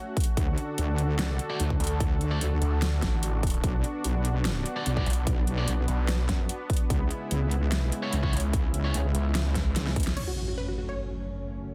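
A dense, heavily limited modern master with light digital ambience frames this chaotic, menacing slice of heavy wobble dubstep, cut from a longer piece and riding a half-time feel at 147 BPM in F# minor. A thick, warbling unison pad holds sustained chords under chorus and sidechain pumping, while the punchy, overdriven electronic kick and a big-room dance kit with a huge snare, metallic hats and crash cymbal drive the drop from 0.2 seconds. Two up-front basses carry the weight as the harmony moves through D, Bm and C#m7: a saturated, detuned wobble bass with chorus, and a snarling, growling saw bass with a moving notch that enters at 1.8 seconds. Bright, high-gain electric guitar stabs sit low in the mix, trailed by dub echo. After a drum fill and a band accent, the music lands on F#m at 10.2 seconds with an up-front electronic impact and a short, wave-folded unison pluck melody carrying dub echo. 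A deep, moody pad with a sub octave and built-in reverb surfaces faintly in the background at the very end.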